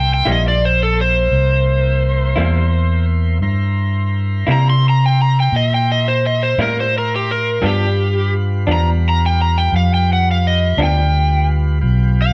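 Rollicking and swaggering, this slow blues in a straight 12/8 is carried by a bright, overdriven slide guitar played with fingerpicks that solos up front through the whole stretch, over a dark, round and punchy fingered electric bass. A smooth, clean tonewheel organ holds sustained chords through a slow rotary speaker, while a slightly broken-up, compressed electric guitar through a small old amp adds lo-fi tremolo accompaniment from 0.3 to 11.0 seconds. The band plays live together in a moderately reverberant stone room, moving from C7 to G7 at 7.6 seconds in this passage cut from a longer piece.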